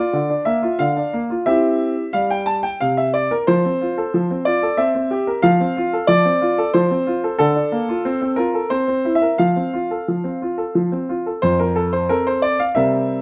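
Set up front in a lightly reverberant room, a clear concert grand piano plays alone from 0.0 to 13.2 s, its open tone resting on a deep bass and spanning F2 to A5. This graceful, playful classical-period sonatina is in F major and 3/4 at 90 BPM, tuned to A4 = 442 Hz, and moves with a rubato feel through Bb/D, C, F and C7 harmonies. A new section begins at 11.4 s before this fragment of a longer piece is cut off.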